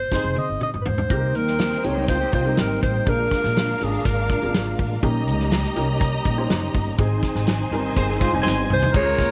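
A breathy, up-front alto saxophone with slapback echo opens this passionate, urgent fragment of uptempo 1960s-style soul over woody pizzicato upright bass, a natural country drum kit with a punchy kick and a fat snare, a boxy upright piano and a brief horn section touch on the opening band accent and drum fill; lush bowed strings and a very quiet, round tonewheel organ with slow rotary enter at 1.1 seconds, a clean fingered electric guitar adds a background riff, and the jazz-style horns return at 8.0 seconds for a closing accent and fill.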